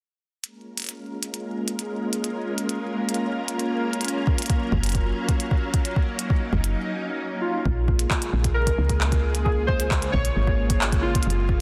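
This glitchy, cerebral IDM fragment opens on an overdriven electronic drum kit of handclaps and clicky hi-hats, joined almost at once by a silky, vintage string machine holding mellow, up-front chords that breathe with sidechain pumping and an ensemble chorus. The chords move from Bbm7 to Gbmaj7 and back. At 4.3 seconds a soft, overdriven kick drum arrives, followed closely by a woody, round FM bass with a dark, quickly decaying tone. At 7.4 seconds, just ahead of the second section, warbling lo-fi synth keys enter with a nostalgic, detuned, wave-folded melody coloured by chorus and tape echo. A lush hall reverb and a dense, heavily limited modern master give the cut-down passage a full, polished finish.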